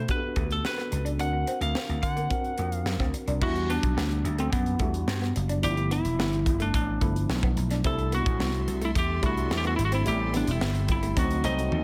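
Breezy and glossy, this polished 1980s jazz-funk pop excerpt in straight 4/4 sets a compressed, slightly broken-up lead guitar melody up front over a punchy vintage slap bass and a crisp fusion drum kit with a high-tuned snare and gated reverb. A worn, slightly out-of-tune tine electric piano with overdrive and lush chorus plays accompaniment, and a dark, lo-fi picked electric guitar riff through a small old amp sits in the background. A bright, bowed studio string section adds sustained chords from 7.8 s as the harmony moves from Bm7 through Em9 and G13 to C6 and Am7.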